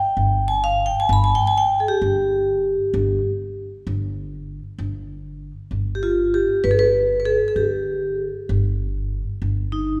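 Persian modal ensemble music in dastgah homayun on G, passionate and festive at 65 BPM in a straight 6/8, where a bright, ringing vibraphone struck with medium hard mallets carries the melody up front and close, joined at 0.2 s by a woody, thumpy pizzicato upright bass holding a low G beneath it, with the passage shifting to a new section at 4.8 s, all set in the lingering reverberation of a recital hall in this fragment of a longer piece.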